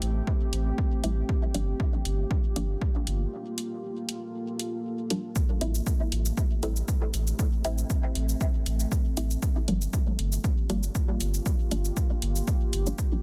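A punchy, overdriven electronic kick sits up front at 118 BPM in 4/4 with a slight swing on the sixteenths, joined by a layered, overdriven hi-hat and shaker in small room ambience, all in a hazy, hypnotic dub techno cut from a longer piece. Underneath, a soft, round sub bass blends triangle and square wave tones with a fast attack, held up front and pumping with the sidechain. From 1.0 seconds, a muted, full-bodied chord stab built from detuned sawtooth plucks with short decay drifts through phaser, cassette tape colour and dub echo. Behind it, a moody ambient pad of unison sawtooth and sine voices with a sub octave swells in slowly and lingers on chorus and built-in reverb. The harmony moves between Am7 and Gm7, with a break from 3.3 to 5.4 seconds, under a digital ambience and a dense, heavily limited modern master, with the tuning slightly flat at A4 = 437 Hz.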